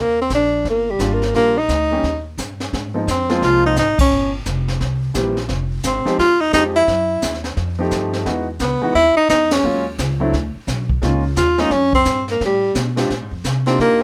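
A brisk swing in four drives this small-group jazz clip from a longer piece, with the tenor saxophone and upright bass both sounding from the opening moment and the brushed drum kit joining at 0.3 seconds. The bass is woody, dark and thumpy, its gut strings plucked, while the kit mixes brushed snare, ride, hi-hat, crash and a boomy kick, with a high-tuned snare ringing in a studio room. A concert grand piano enters at 1.0 seconds to comp beneath the tune, its intimate, natural tone carrying deep bass and audible action noise. Out front, the close-miked tenor saxophone sings the melody in a jazz style, warm and full of vibrato. The band hits shared accents at 3.9 and 9.5 seconds as the harmony moves restlessly through colorful extended chords, and light reverb gives the warm, swinging mood a gentle sense of space.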